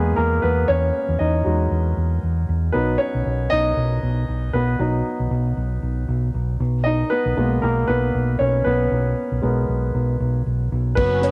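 A lightly swung sixteenth-note pulse carries this anthemic, piano-driven pop fragment. A polished, up-front grand piano with plate reverb leads through Emaj7, B and G#madd9/B over a round, punchy fingered electric bass, until a damped 70s drum kit with dark cymbals and a tight kick, joined by a lush, distant bowed string section, arrives at 11.0 seconds just as the cut ends, in a lightly reverberant home cassette recording.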